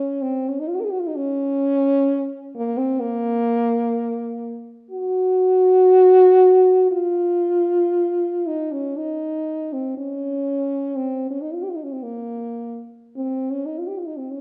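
A wet recital-hall reverb with a soft, rolled-off top surrounds a lone French horn, placed up front yet sounding roomy and a touch distant. This is a yearning, mournful classical fragment in Bb minor, played freely with rubato at roughly 49-66 BPM in 4/4. The horn's mellow tone, soft attacks and light vibrato carry an expressive line between Bb3 and Bb4 for the full 14.4 seconds.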